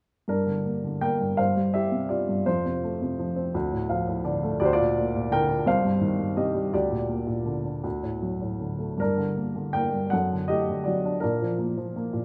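A woody upright piano with short sustain sits up front in a moderate recital-hall reverb, playing a brief solo piece of wistful, melancholic classical music that is cut from a longer work. In G minor and 6/8 at roughly 52-58 BPM on the dotted quarter, the rubato playing moves through a lyrical progression from Gm through Dm, Cm and D before settling on Bb, with a short piano fill between 3.5 and 4.6 seconds.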